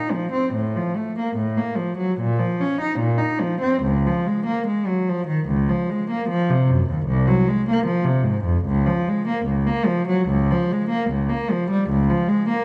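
Introspective and flowing, this is a baroque-style suite movement for unaccompanied cello at 74 BPM in 4/4, played with a rubato feel. A single bowed cello in period style sits close and up front, its rich, reedy gut-string tone ranging from C2 to Eb4 across the 12.6-second excerpt cut from a longer piece. The dark production places the instrument in a wet recital hall reverb, with some lossy compression artefacts audible.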